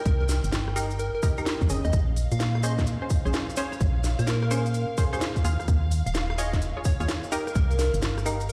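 Moody and late-night, this excerpt from a longer UK garage piece moves in a swung two-step groove at 128 BPM in Bb dorian, cycling through Cm7, Bbm9 and Eb7sus4 chords. A dark, hollow FM bass with an organ-like, percussive edge sits up front beside a tight, tape-warm electronic kick, while the layered garage kit adds a cracking snare, crisp hats, claves and rim clicks. A grainy cabasa sits in the background, and a lush bowed violin section holds smooth sustained chords behind it all, pumping with the sidechain. From 0.8 seconds, punchy detuned sawtooth chord stabs with a filter pluck and chorus cut through, trailing tape echo. Over the top, a catchy, bright square-wave unison lead carries the melody through phaser and tape echo, and the whole mix sounds as if played on a big sound system in a bare room, bathed in large studio reverb.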